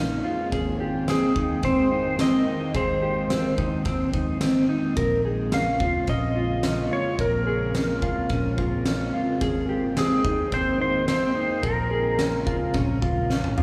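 An echo-heavy mix with small-room ambience and a chamber reverb frames this haunting, melancholic dream pop excerpt, cut from a longer piece and moving between Bbm9 and Abmaj9. A detuned, warbling lo-fi pad holds sustained chords through chorus and phaser, while a mellow electric guitar plays arpeggios bathed in lush chorus and tape echo, over a round, foam-muted fingered bass. From 0.5 seconds an oversized, low-tuned kit adds a punchy kick, fat snare, dark cymbals, tambourine and gritty toms in tape echo, a clean slide lap steel carries the melody with volume swells from 1.1 seconds, and a drum fill closes at 13.3 seconds.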